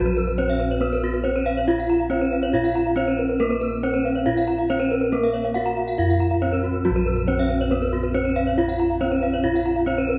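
A bronze metallophone struck with a horn mallet carries the melody up front, its paired tuning producing shimmering beats in a boxy, warm tone that rings between Gb3 and Gb4 (each about 40 cents flat). This brief fragment of Balinese gamelan, cut from a longer piece, moves at 139 BPM in a straight 4/4 within a Bb pelog scale and feels ceremonial and brilliant. Above the melody, a second bronze metallophone plays arpeggios with a wooden mallet, and a quieter third metallophone, also horn-mallet struck, adds more arpeggios from 0.1 seconds, reaching up to Bb5. Bossed gongs hit with padded beaters supply a round, mellow bass that beats softly from Bb1 to Bb4, sitting close to the listener. The ensemble plays throughout its single section, wrapped in the wet reverb of a church or concert hall.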